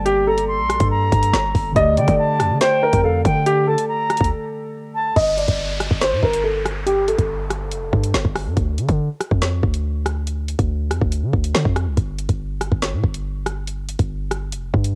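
Cold and menacing, this half-time drill cut is a short piece lifted from a longer track, and it sounds like a home cassette recording with little reverb. A dark baby grand piano carries the melody with a long, mellow sustain, filtered and run through tape and tape echo, while a reedy, airy concert flute with a straight, tongued tone adds a second line with its own tape echo. Underneath, a worn, slightly out-of-tune tine electric piano supplies muffled accompaniment over Gm and Dsus4 until both it and the flute stop at 5.2 seconds. The drill kit pairs a knocking kick and woody snare with rim clicks and tape-softened hats, and the punchy, heavy 808-style bass, a sine with a noise layer and a fast, decaying attack, runs from the start to the end. After 5.2 seconds a downlifter sweeps through and the piano drops out at 8.5 seconds, leaving drums and bass to carry a stretch with a rootless Csus4 before the break that begins at 12.0 seconds.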